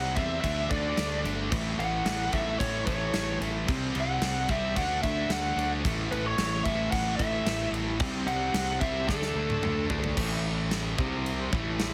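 Powerful and energetic, this hard rock excerpt drives along at 111 BPM in a straight 4/4, with a dark, distorted bluesy lead guitar carrying the melody until 9.9 seconds over a stack of three overdriven rhythm guitars playing the riff: a bright, double-tracked cranked stack guitar, a sludgy distorted guitar and a very quiet hollow-bodied semi-hollow guitar. A bright, punchy fingered electric bass from the start and a huge arena drum kit, up front with bright cymbals, a punchy kick and a hall sound, entering at 0.2 seconds, anchor the groove, with a drum fill at 9.1 seconds. A very quiet tonewheel organ holds piping, scooped chords through a slow rotary speaker with key click, all wrapped in light reverb and heavily compressed, radio-style sound.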